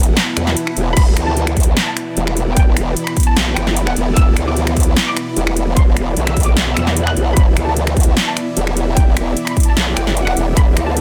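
Dense, heavily limited and lightly reverberant, this heavy, menacing half-time wobble dubstep excerpt centres on a saturated, wobbling growl bass up front with chorus and overdrive, joined at 1.0 seconds by a punchy electronic kick and backed throughout by a big-room dance kit of soft-clipped snare, metallic hi-hats, finger snaps and crash cymbal, while huge detuned supersaw chords with phaser and a nostalgic, lo-fi tape-like pad pump in the background, a brief electronic swell sounds at 0.6 seconds, and a clear, smooth studio violin section carries the melody with delay from 1.0 seconds.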